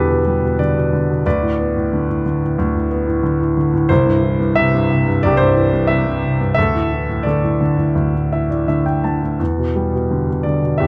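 Flexible rubato timing stretches and relaxes the 4/4 pulse, giving this short classical passage for solo piano a lyrical feel. The mood is moody and cool, carried entirely by a clear grand piano that sits up front in an intimate, natural sound, close enough that the noise of its action is audible. The harmony moves from Em7 through Bm7/D and C to Dsus2 before settling back on Em7, with the piano spanning from C2 up to A5. A brief fill from 8.0 to 9.4 seconds leads into that return to Em7. Light reverb and detailed close microphones frame the instrument, and the passage, cut from a longer piece, runs just under 11 seconds.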